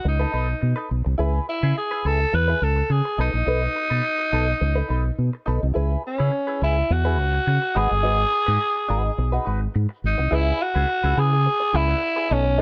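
A growling tenor saxophone leads this glamorous, danceable disco excerpt at 105 BPM in C# minor, carrying the melody up front with a raspy, gritty edge, light vibrato and a subtone in a vintage jazz style. Beneath it, a fingered electric bass sits dark and round, also up front, anchoring the low end throughout. A clean, direct-recorded electric guitar supplies picked, compressed accompaniment coloured by wah and a lush chorus. The harmony moves between B7 and C#m7, touches G#m7 near 7.8 seconds, and settles back on C#m7 as a new section begins at 10.3 seconds. All three parts play together for the full 12.6 seconds in a small room ambience.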